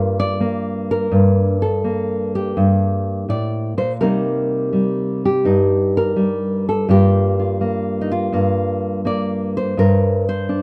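A solo nylon-string guitar opens this short cut from a longer solo jazz piece, fingerpicked with a dark, full-bodied acoustic tone and a classical touch. The mood is cool and swinging, the eighth notes carrying a relaxed lilt in 4/4. The guitar sits up front in a dry, close recording with a 1970s studio character, so small details like finger squeaks come through clearly. Its range stretches from low bass notes up into the upper register as the harmony moves from Gm7 to Cm7 at 4.0 seconds and back to Gm7 at 6.9 seconds. The whole passage lasts about 10.6 seconds, an intimate glimpse of one player alone.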